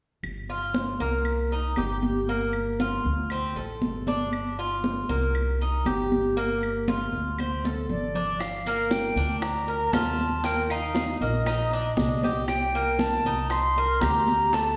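Bright congas played with hard hands, close woody claves and a thumpy pizzicato upright bass set a straight 118 BPM Cuban son and guajira groove in G minor, while an up-front, metallic Cuban tres picks arpeggios on double strings over a Gm7, Cm7 and D7sus4 cycle. A drum fill at 7.4 seconds leads into a nostalgic second part: an airy, tongued jazz flute with rolled-off highs enters at 7.9 seconds, and round, low-tuned bongos and grainy, distant maracas join at 8.4 seconds as the harmony moves through Ebmaj7 and Cm7. This excerpt sits in a reverberant recital hall that lends it a warm, spacious glow.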